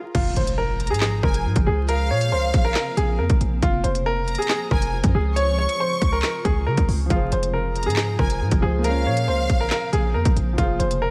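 Drill-style hip hop in a half-time feel, cold and tense, heard here as a short cut from a longer piece. A clear, slightly worn concert grand carries the melody up front with short sustain and tape echo, while a punchy, heavy 808-style bass with a fast attack and decaying tail sits alongside it. The drill kit is electronic and forward, with a hard-clipped kick, woody snare, crisp hats, handclaps, rim clicks and crash, all given a vintage 12-bit sampler grit. From 0.8 seconds a lush studio violin section adds a high, expressive second line with vibrato, portamento and tape echo, over a blurred, evolving granular pad that holds sustained chords in the background with its own reverb. A background electronic swell and impact opens the cut, and at 7.1 seconds a soft, felt-muted upright piano joins in the background with audible action noise. Vinyl crackle runs underneath, and the harmony circles between F minor, B-flat minor add nine and D-flat major seven.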